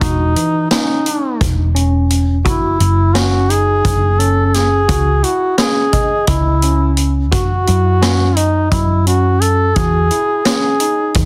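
Driving and intricate, this progressive instrumental excerpt moves in a 7/8 meter, with a duduk carrying the solo melody up front in a folk style full of vibrato and scooped notes. Beneath it, a barky tine electric piano plays clean arpeggios through its built-in speakers, while a dark, round, punchy hollow-body short-scale bass, picked and amped, sits up front alongside a small-room acoustic drum kit with a boomy kick, a medium-tuned snare and a rolled-off top. Light studio reverb surrounds the parts, and the master is dense and heavily limited in a modern style.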